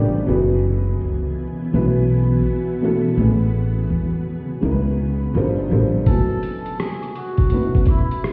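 Muffled as if heard through a wall, with vinyl crackle and a stone-room reverb, this short excerpt of nostalgic, melancholic lo-fi hip hop sways at 83 BPM in swung 4/4 over chords moving from F#m11 through Amaj9 and C#m9 to Gm11. A dark, worn upright piano with audible action noise and a slightly detuned, boxy tone plays throughout on cassette-tape colour, while a woody pizzicato upright bass and a blurred, evolving granular pad hold the ground until about 6 seconds. At 6.1 seconds a compressed, pitched-down sampler kit with a thumpy kick and rim clicks arrives with a very quiet tube shaker and woodblock, and a veiled, breathy cup-muted trumpet takes a soft jazz solo through analog delay.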